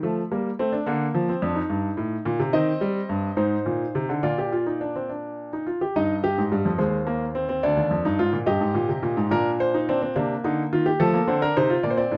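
Classical baroque-style three-part fugue for solo grand piano in E-flat major, moving in a serious, solemn 6/8 at 71 BPM on the dotted quarter, tuned to A4 = 441 Hz. The piano sounds smooth and vintage, placed up front in a light reverb, spanning D2 to Eb5. Harmonies pass from F through Bb/D and Ab before a new phrase at 6.0 seconds turns through Abadd9/Eb, Bb7/D and Cm7 to close on F7 in this short cut from a longer piece.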